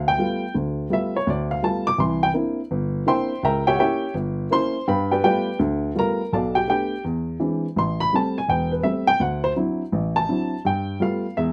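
A swinging 4/4 pulse at 166 BPM drives this short solo jazz excerpt, with the eighth notes given a 65% swing feel in G mixolydian. A lone upright piano carries the whole performance from 0.0 to 11.5 seconds, ranging from a deep E1 up to D6 in a sophisticated, swinging mood. Its tone is dark and woody, with short sustain and audible action noise that lend it an intimate, vintage character. The harmony moves from G9 through C9 and a C#dim7 back to G9 at 4.9 seconds, then runs Bm7b5, Eaug7, Am7 and D9 before settling on G9 at 10.6 seconds. The piano sits up front in a moderate club reverb, giving the playing a close, smooth presence.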